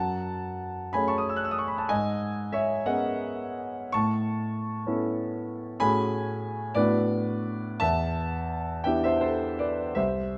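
Hazy and mysterious, this short fragment of impressionist classical solo piano drifts in 6/8 with a free, rubato feel. A clear concert grand carries the whole passage alone, its tone open and up front, with a deep bass reaching down to C2 and a range that climbs as high as F#6. The harmony moves through colored, extended chords, opening on F#madd9 and passing through G#m11 and Aadd9 before settling toward D69/A and closing the fragment on Em7. Close, detailed microphones capture the instrument intimately, while a moderate recital hall reverb lends a gentle halo of space around each chord. Cut from a longer piece, the passage lasts just over 10 seconds, leaving its dreamlike mood unresolved.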